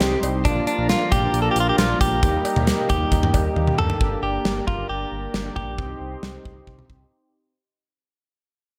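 A melancholic yet driving synth-pop excerpt in G minor at 135 BPM opens with everything at once: a punchy, polished gated 80s drum kit of kick, medium-tuned snare, hi-hat, toms and cowbell sits up front, beside a smooth gliding synth bass with vibrato and portamento, fat, detuned analog synth brass, and a warm, chorused analog pad set in the background. A clean, compressed, direct-recorded electric guitar carries the melody up front through delay. A drum fill at 3.6 seconds leads into a filter sweep as the music fades out from 4.0 seconds, and a brief break at 7.1 seconds closes the fragment, all within light small-room ambience while the drums ring in airy gated reverb.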